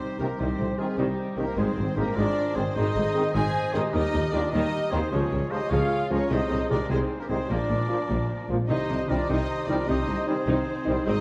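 Cinematic orchestral music in 12/8 at 101 BPM, soaring and heroic, moving through C minor, Ab, Eb, Db and Bb before returning to C minor in this 11.2-second fragment of a longer piece. A distant, lush violin section carries the melody in the background while a smoother second violin section, a present clarinet, a vintage-toned oboe and a ringing, thumb-plucked concert harp weave lines and arpeggios around it, with roomy, tight trumpet stabs behind them. From 0.2 s a very quiet viola section with portamento, a bright trombone section and a mellow French horn section holding sustained chords, and a low foundation of clear tuba, woody double basses and soft-attack cellos join in, all set in a moderate scoring-stage reverb.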